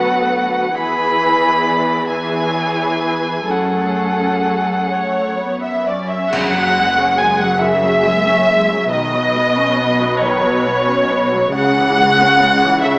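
Heard through a small-speaker filter in a reverberant scoring-stage space, this bittersweet, moving cinematic film score in F# minor drifts in a rubato 6/8 at 42-48 BPM: muted chamber and symphonic violin sections carry the melody and a second line in veiled, con sordino tones, a lone up-front violin sings above them until 5.9 seconds, and lush distant violas and close cellos sit beneath. A cymbal swell, dark clash cymbals and a dry concert bass drum come in from 3.5 seconds, and a rich double bass section joins at 6.3 seconds as the harmony moves from F#sus2 through Badd9 to C#m.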